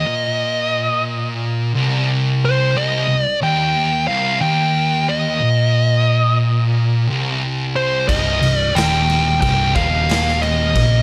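Studio reverb wraps this heavy, hypnotic stoner and doom metal passage, cut from a longer piece, which moves at a slow 90 BPM in a straight 4/4 around a single C minor chord. Two thick fuzz guitars pound out a low riff from the opening, their warm, distorted tone forming a dense wall, with one of them sitting further in the background. Above them, a dark, fuzzy lead guitar carries the melody up front, its picked notes trailed by delay. At 8.1 seconds a growly, punchy overdriven bass joins in, adding amped weight beneath the riff. A raw garage drum kit arrives at the same moment, its boomy kick, medium-tuned snare and crash cymbal sounding gritty and saturated, with a rolled-off top in a bright stone room that pumps around the hits.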